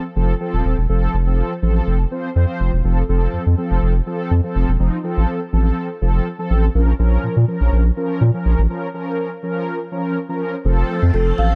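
Energetic and driving, this straight-feel pop excerpt at 123 BPM pairs up-front, brassy, detuned synth brass accompaniment with chorus and vibrato over a deep, thick, saturated sub bass, moving from F to B-flat minor through a break at 8.7 seconds before a swirling, vintage string machine with phaser enters at 10.7 seconds and a mellow soft-mallet marimba melody appears at 11.1 seconds, all in a dry, close sound.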